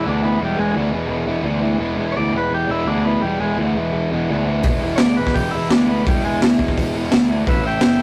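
A straight 4/4 beat at 170 BPM drives this raw, swaggering garage rock cut, taken from a longer piece in E mixolydian with the tuning set slightly low at A4 = 438 Hz. From the start, an overdriven combo organ with a buzzy, vintage character carries the melody, while a dark, double-tracked electric guitar plays a picked riff up front. Underneath, a picked electric bass pushed through fuzz and overdrive gives a round, punchy low end. The raw garage drum kit arrives at 4.6 s, with a punchy kick, a medium-tuned snare and hi-hat sounding gritty and saturated in a small, pumping room with a rolled-off top. The harmony rests on E before moving to A at 7.5 s, and the whole fragment has the rough feel of a rehearsal-room recording with light reverb and warm saturation.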